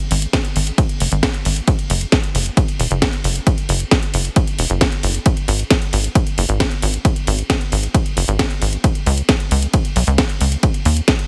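A tight, saturated sequencer bass, a wave-folded blend of sawtooth, square and sine with a filter pluck, moving notch and sidechain pumping between E1 and D#2, drives this euphoric, soaring uplifting trance excerpt at 134 BPM in straight 4/4, sitting up front alongside a punchy, layered electronic kick and a techno kit of cracking snare, metallic hi-hats and ride cymbal whose hats and cymbals also pump, with kick and kit set in a small room and the whole mix carrying a heavily compressed, radio-like sheen.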